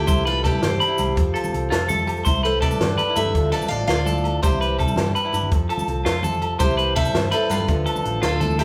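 A full-bodied, picked steel-string acoustic guitar carries the melody up front, finger squeaks and all, in this sunny, joyful highlife excerpt at 110 BPM in 12/8 and C major, cycling through C, F, C and Dm, while a twangy, slightly broken-up electric guitar plays arpeggios, a warm fingerpicked flamenco guitar accompanies, a dark, round hollow-body short-scale bass holds the low end, a compact cocktail drum kit with a high-tuned snare and punchy kick enters at 0.1 s, and ringing agogo bells, thin-skinned congas and grainy maracas sit in the background, the band playing live in one room under a large studio's wet reverb.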